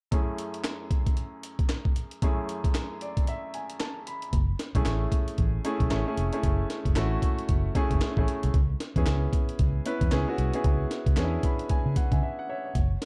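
A clear, polished baby grand piano and a gritty, compressed breakbeat drum kit, with its thumpy kick, high-tuned snare, handclaps and hi-hat, open this confident, bouncy new jack swing R&B excerpt at 114 BPM in F# minor, with a round, punchy, foam-muted electric bass joining at 4.3 seconds over F#m7 and C#m7 chords, and piano fills leading into short breaks in a dark digital ambience.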